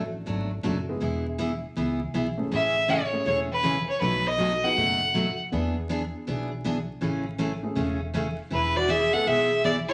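Country western swing at 160 BPM in 4/4, with a swung eighth-note feel and a cheerful, down-home mood, in A major over a progression that moves from Bm7 and E to Amaj7, B7 and E7. This short excerpt is cut from a longer piece. A woody, thumpy pizzicato upright bass opens at 0.0 s, joined almost at once by a bright, full-bodied picked steel-string acoustic guitar, up front with audible finger squeak, and then a dark, mellow vintage upright piano whose intimate sound carries audible action noise and short sustain. A clear fiddle takes the melody from 2.5 to 5.4 s, bowed by one player with light vibrato and an earthy yet distant tone, and it returns at 8.5 s alongside an airy, close-miked alto flute playing a second line with tongued, unsteady vibrato. The parts sit in a wet studio reverb, and a layer of vinyl crackle lends an old-record character.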